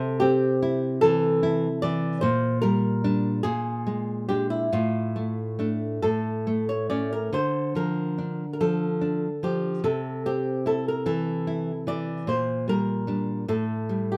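A fingerpicked flamenco guitar carries the melody up front, its warm voice moving between E4 and D5 over a slow, rubato 6/8 pulse of about 46-50 dotted-quarter beats per minute. Beneath it, a dark, full-bodied nylon-string guitar plays classical fingerpicked accompaniment from A2 to E4, with audible finger squeaks, as the harmony drifts from Am/C through Gm/Bb, Bb7 and Dm/A toward A and Dm. The result is a melancholic, elegiac romantic duo, tuned to A4 = 441 Hz and set in light reverb, in a 14.2-second passage cut from a longer piece.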